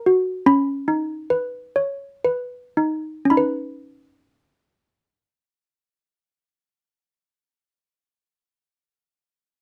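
A gentle three-beat lilt moves freely in rubato, slowing down over the first 3.3 seconds before the music passes into a new section. This tender, sleepy children's piece is carried entirely by malleted handbells, which play the melody from the start until 8.1 seconds. Their bell-like tone sounds damped and short, with medium clappers giving each note a full, dry body. Close microphones keep the handbells up front and detailed, set in a light reverb. It is a brief excerpt of a longer piece, with the melody sounding like a quiet lullaby.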